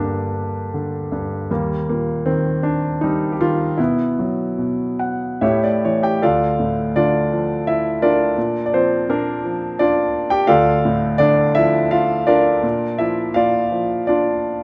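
A smooth, vintage-toned grand piano sits up front in this relaxed, hopeful excerpt of lyrical solo classical piano, moving in a rubato 3/4 at 70-87 BPM from G minor and E-flat harmonies through a brief fill at 4.6 s that settles into D minor at 6.2 s, all framed by a moderate recital-hall reverb.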